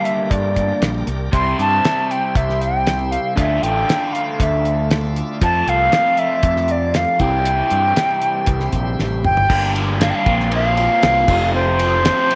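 The drums set a straight 4/4 pulse at 118 BPM in this dark, mysterious psychedelic rock excerpt in G dorian, with a damped 70s kit that sounds dry and smooth, its fat snare, tight kick and dark cymbals sitting up front. A growling fingered electric bass, overdriven and punchy, enters at 0.3 seconds, while a crunchy, double-tracked overdriven guitar plays a picked riff through a phaser. Over them a concert flute carries the melody with a pure tone, soft attack and expressive vibrato, placed up front and touched with slapback echo. A bright, shouting tonewheel organ holds sustained chords through a slow rotary speaker and light overdrive, key click audible, until it drops out at 9.5 seconds. Just before that, a drum fill from 9.0 seconds leads from the opening section into a shorter closing passage, as the harmony moves from Gm through C, Dmadd9, F6 and back to C before turning to Gm, Bbsus2 and F, all set in a moderate echo chamber reverb.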